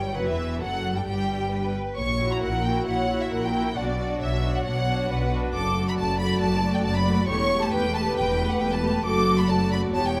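Heard from the very start, this spirited, graceful fragment of a quick classical-period movement for string orchestra, at 136 BPM in 4/4 with a rubato feel, sets a lush, up-front violin section singing the high melody over a smooth, more distant second violin line, an even viola accompaniment, a close cello bass and a clear, focused double bass section, all bowed with vibrato, as the harmony turns from B minor to D major at 5.5 s within the moderate reverb of a scoring stage captured by close, detailed microphones.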